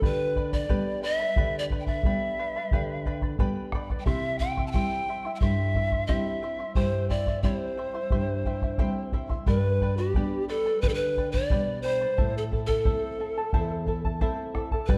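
A straight 4/4 pulse at 89 BPM anchors this earthy, melancholic Andean folk piece, cut from a longer work. The deep bombo sits up front with a small-room character. Over it a breathy, bright bamboo pan flute carries the melody between G4 and A5, close-miked, with soft attacks, audible chiff and an unsteady vibrato. The charango adds fingerpicked accompaniment on double strings, some doubled at the octave, with a shimmering tone. Beneath it a woody classical nylon-string guitar with old strings is thumb-plucked in the low register. The harmony moves from G to C at 4.1 seconds, back to G, then to Am. All four parts play throughout, inside a moderate recital-hall reverb and a dark, warm production.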